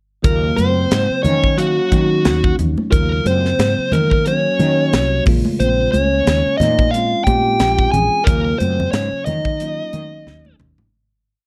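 A dark, lightly reverberant production frames this nocturnal, driving electric jazz fusion piece at 90 BPM in Eb dorian. A smooth overdriven lead guitar states a motif-based melody up front over a crisp drum kit's funk groove with its punchy kick. Beneath it sit a woody fretless bass playing a growly syncopated riff, a bell-like tine electric piano pushing rootless chords through phaser, a breathy trombone doubling at the octave in the background, and loose, high-tuned congas. The harmony moves from Ebm9 to Bbm9 at 5.3 seconds, and a fade-out from 8.3 seconds ends on a drum fill at 10.3 seconds.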